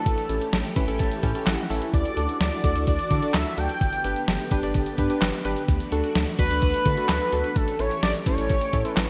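Bright and nostalgic, this 128 BPM synth-pop excerpt in D major pairs a bold, octave-doubled sawtooth lead carrying the melody up front over swirling phased string-machine chords, a round, deep analog bass, soft electric-piano-like synth keys that add a fill between 0.5 and 1.9 seconds, and a thumpy, tape-toned digital drum machine of kick, snare, hi-hat and handclaps with gated reverb, all set in a lush hall with bright 1980s-style digital production as the chords move from A7 through Dadd9 and Gadd9.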